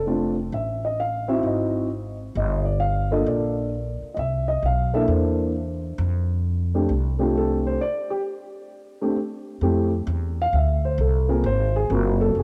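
An upright bass opens this swinging jazz fragment, its pizzicato steel strings sounding woody and growly as it holds the low end. A dark concert grand piano joins almost at once to carry the melody, its mellow tone, deep bass and long sustain giving the tune a warm glow. Both instruments sit up front, surrounded by light reverb and the ambience of a small room, with the homespun character of a cassette recording. The harmony moves from a rootless Bbmaj9 through Ab7, Gm9 and C13 to a settling F69, before a break at 7.8 seconds. A new section begins at 9.6 seconds on Fmaj7 and turns to Ab13, as the fragment ends, cut from a longer performance.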